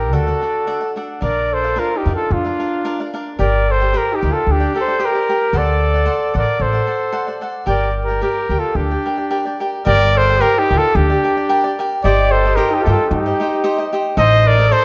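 Mexican folk in the mariachi tradition, this short excerpt cut from a longer piece carries a romantic yet festive mood over a lightly swung 4/4. A warm, close-miked trumpet sings the melody up front in a classical style with light vibrato, while a second trumpet, clear with a smooth top, plays its own supporting line beneath it. A picked cavaquinho supplies crisp acoustic accompaniment, and a pizzicato upright bass with steel strings sits up front, woody and growly. The harmony moves from D and Bb to G minor and D7, later touching Cm/G and arriving on Adim at 14.2 seconds. Moderate recital hall reverb gives the dark production a sense of space, and all four parts play together from the opening through about 14.8 seconds.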